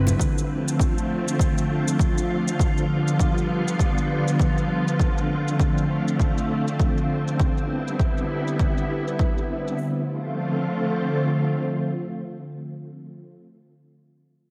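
A silky, warbling string machine leads this wistful sunset chillout excerpt, holding sustained chords with a slow attack, long release and ensemble chorus from D3 to B4 over Dm7, G7 and Cmaj9 in D dorian, with its sawtooth and pulse-wave tones up front. A punchy, layered electronic kick sits forward at 100 BPM in 4/4 with a 57% swing on the 16ths, while a muffled, low-passed electronic shaker adds a faint pulse until 9.8 s, when the strings carry on alone. The sound is heavily compressed like a radio broadcast, bathed in a wet digital scoring-stage reverb.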